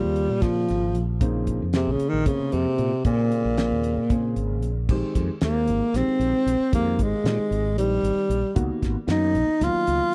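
A close-miked tenor saxophone with warm vibrato and tape echo leads this funky, nocturnal electric jazz fusion excerpt in 7/8 at 229 BPM in Bb dorian, stepping into a solo at 4.9 seconds over a round, punchy fretless bass with lush chorus, a damped 70s drum kit with a fat snare and dark cymbals, and a boxy grand piano in the background, all captured in a dry, close 1970s-style studio room as the harmony moves from Bbm9 through Bb13sus4 to Db13sus4.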